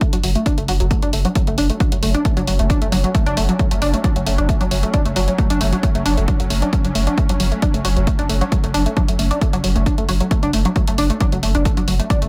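Echo-heavy and lightly reverberant with a digital ambience, this excerpt of driving peak-time techno at 134 BPM in F# minor sets a hypnotic tone: a tight, detuned sawtooth-and-square sequenced synth riff sits up front with chorus, tube saturation, cassette-tape grit, analog delay and sidechain pumping; a swarming, tense granular sine drone in detuned unison enters in the background at 1.2 seconds with its own reverb and pumping; an overdriven, layered heavy kick and a thick, low-passed, saturated triangle sub bass anchor the low end; and a tape-warm electronic hi-hat, re-recorded in a small room, runs throughout.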